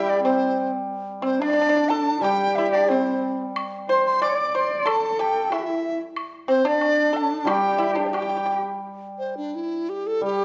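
In a loose, rubato 2/4, this graceful, pastoral Chinese chamber ensemble piece is cut from a longer work. A mellow large dizi carries the melody up front, its bamboo tone airy and buzzing from the membrane, with soft attacks and expressive vibrato. Beneath it, a fingerpicked pipa with a dry, percussive touch shares a second line with a husky, bowed horsehead fiddle, played by one player, whose portamento and vibrato sit close to the front. A shimmering hammered dulcimer rings out as accompaniment, and a woodblock in a small-room sound joins at 3.6 seconds. The dulcimer returns at 7.4 seconds after a pause, and the pipa and fiddle stop at 8.6 seconds, leaving the dizi and dulcimer to close out the brief final section in a moderate recital-hall reverb.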